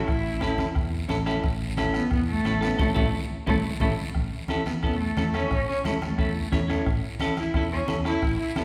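A rich, bowed cello sings the melody with vibrato and portamento over a clean, picked hollow-body electric guitar in this sunny, festive cumbia excerpt at 177 BPM in A major, driven by a growly, punchy fingered electric bass, a soft-beater bombo, a raspy guiro and ringing, low-tuned congas in the background, with a band accent from 2.8 seconds, a guitar fill and drum fill closing the first section at 4.2 seconds, and a second guitar fill at 6.4 seconds, all bathed in a reverberant recital-hall space.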